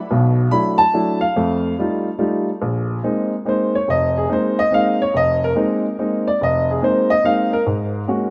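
Hypnotic and searching, this short jazz fragment from a longer piece has a swung waltz feel, carried by a solo baby grand piano that plays from 0.1 to 8.3 seconds across a span from F1 to B5. The piano sits up front with a warm, open tone and long sustain, wrapped in a lush hall reverb within a rough home demo mix. Ninth chords drift from E9sus4 through F9 to Bb9sus4, then settle onto Ab9sus4 near the close.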